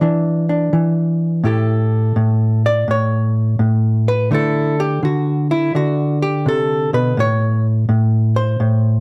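Swinging and warm, this short solo jazz excerpt at 84 BPM in A mixolydian features a dark, clean, compressed electric hollow-body jazz guitar, fingered and placed up front, moving from E7 into a solo at 1.4 s over A7, Dsus2 and A, captured with close, detailed microphones in a moderately large studio reverb.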